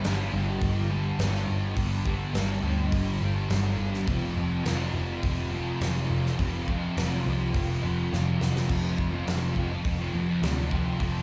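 A small room ambience surrounds this brief dreamy, wistful shoegaze and dream pop excerpt at 104 BPM in a straight 4/4, where a thick, double-tracked fuzz guitar sits up front with distortion and ensemble chorus, playing a dark riff over G5 and then F5 from 4.1 seconds. A vintage foam-muted picked electric bass adds a round, amped low end, while a huge arena drum kit with bright cymbals, a fat snare and a punchy kick plays crash, hi-hat, kick and snare in a big natural room. A drum fill at 8.1 seconds leads into a new section at 8.7 seconds before the clip cuts off.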